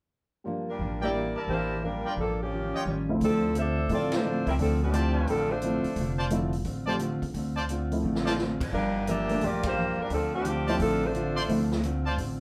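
Swinging in 4/4 at 174 BPM in D minor, this brassy, sultry big band jazz passage, cut from a longer piece, sets a smooth, up-front saxophone section melody with light vibrato over a growly pizzicato upright bass, a full-bodied picked steel-string acoustic guitar and a natural-sounding baby grand piano, while a brilliant trumpet section adds stabs and a distant, roomy drum kit with a boomy kick joins at 3.2 s and plays a fill at 8.0 s, the band heard playing together in one room with wet studio reverb.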